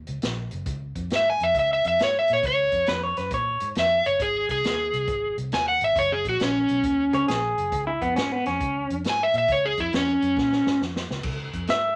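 A swung shuffle at 136 BPM drives this swaggering, laid-back electric blues excerpt in Db mixolydian, with a vintage drum kit of punchy kick, medium-tuned snare, hi-hat and dark crash cymbals under a round, foam-muted fingered bass that stays low in the mix. An overdriven slide guitar carries the melody up front from 1.2 seconds, while a slightly broken-up, compressed second guitar through a small old amp adds short lo-fi picked phrases, and a drum fill at 10.4 seconds leads back toward the tonic chord. The whole band sits in a moderate club reverb, with chords moving among Gb, Db6, Ab and Gb69.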